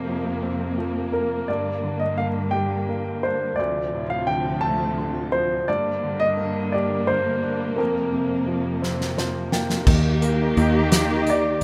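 A slow, straight six-eight lilt at 57 BPM carries this aching, melancholic pop ballad excerpt in G minor, moving through Fsus4, Gm and Dm7 before shifting to Eb. An intimate concert grand piano with deep bass, long sustain and a touch of digital delay sings the melody up front, while a brilliant, woody upright piano with audible action noise plays the accompaniment over a distant, bowed string section whose vibrato and portamento lend its sustained chords a soft-edged, expressive glow. At 8.8 seconds a loose indie drum kit with a fat snare, boomy kick and dark cymbals enters with a fill as the upright piano plays a fill of its own, and a round, foam-muted fingered electric bass joins at 9.9 seconds, the whole mix sitting in studio reverb with the rough feel of a home demo.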